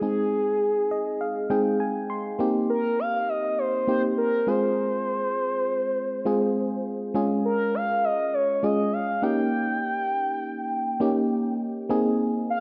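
An expressive synth lead and an FM electric piano begin together, the lead carrying the melody while the piano supplies accompaniment and plays a fill from 0.6 to 2.4 seconds. This is a glossy, nostalgic pop piece at 101 BPM in a straight 4/4, set in Ab major and cut from a longer work. The synth lead is smooth and sustained, blending sawtooth and sine tones with a wave-folded edge, colored by vibrato, chorus and tape echo. The electric piano sounds mellow, with a fast attack that decays and a noise layer beneath its FM tone, and both parts sit up front in the mix. The harmony moves from Ab through Cm7, Fm, Db and Eb7 before settling on Abadd9 at 11.9 seconds. A lush hall reverb and a dark, warm production give the sound a soft, spacious glow.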